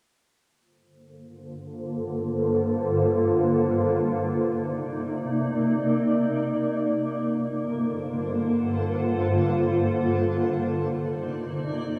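A filter sweep opens this ethereal, melancholic hip hop fragment at 0.5 s, and a cloudy granular pad enters at 1.5 s, holding up-front sustained chords in free time in G minor (tuned to A4 = 441 Hz) until 12.0 s. The blurred, evolving triangle-based tone has a slow attack and long release, softened by its own reverb, a low-pass filter and cassette tape colouring as it alternates between Gm11 and Cm9. Moderate studio reverb and a home cassette recording add to the ethereal feel of this short section cut from a longer piece.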